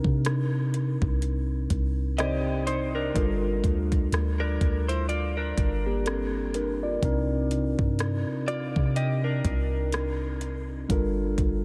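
A mellow tine electric piano, a soft, round 808-style bass and a trap drum kit with a knocking kick, metallic hats and rim clicks open this moody, longing contemporary R&B excerpt, moving between Cm9 and Gm9 with a light swing. At 2.2 s a clean, direct-recorded electric guitar enters with picked, compressed arpeggios colored by analog chorus and delay, playing until 10.7 s. The dreamy mix is soaked in a huge ambient reverb, with the piano and the tape-warm drums up front while the bass stays dark and deep.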